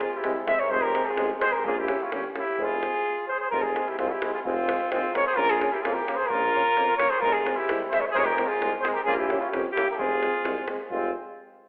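Heard through a narrow, telephone-like filter and soaked in the wet reverb of a recital hall, this short passage is cut from a longer Balkan brass band piece in F harmonic minor at 130 BPM in a straight 2/4. The mood is bittersweet yet fiery, with the harmony moving between Fm and Bbm across two passes of the same section. Up front, a dark cornet carries the melody with light vibrato and a classical touch, while a mellow trumpet plays a second line beneath it, both sounding distant and roomy. In the background, a bright, vintage-toned trombone and a warm euphonium supply accompaniment. A tuba with a smooth top enters at 0.2 s to hold the bass in a jazz-inflected style, and a tight, close davul drives the percussion throughout.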